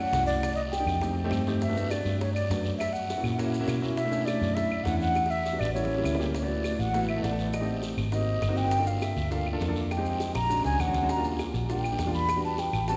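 A breathy, mellow concert flute carries the melody over this sunny, danceable Afro-Cuban jazz excerpt at 202 BPM, its vibrato a little unsteady, and from 6.4 seconds it takes a solo through a shifting run of jazz chords. Beneath it, a dark, round, punchy fingered electric bass and an intimate grand piano with audible action noise sit up front, while tight, high-tuned bongos, a raspy guiro and grainy maracas play from 0.1 seconds, with woody claves joining at 0.4 seconds. Drum fills mark 5.2 and 10.4 seconds, and a wet church reverb gives the whole performance the feel of a large hall.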